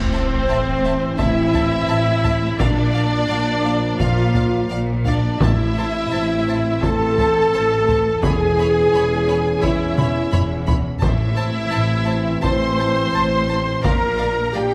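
Mellow French horns hold distant sustained chords over soft-attack trombones in this heroic, relentless epic orchestral film cue, as a lush violin section carries a focused, vibrato-rich melody above a second violin line and smooth violas. Close cellos and woody double basses anchor the low end, a huge sub drop opens the passage, and band-limited taiko drums struck with hard sticks drive from 1.2 seconds with a fill at 10.0 seconds. Dry timpani strikes accent 5.4 and 11.0 seconds, all set in a moderate scoring-stage reverb.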